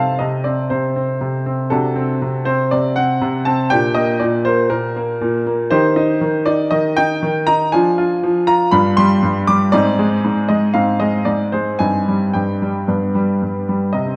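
A clear, present baby grand piano plays alone and up front from the start until 14.2 s, ranging from G2 to D6 in this short cut from a longer classical-period sonatina. The mood is serious and elegant, moving at 119 BPM in 4/4 with a rubato feel that lets the pulse breathe. The harmony opens in G minor on a diminished chord over C and a D7 before shifting to C minor at 5.7 s. It then passes through an A-flat chord and a C minor chord over G before coming to rest on G. A moderate recital hall reverb surrounds the instrument, and the production leans dark and warm.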